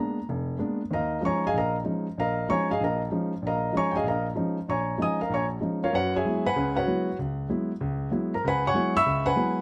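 A solo grand piano, intimate and up front with its action noise audible, opens this brief, swung jazz fragment on a Bb7b9 chord before settling at 0.9 seconds into hypnotic, spiritual Eb9sus4 harmony that moves to Gb9sus4 at 5.9 seconds, its natural tone caught by close, detailed microphones in light reverb with some lossy compression artefacts.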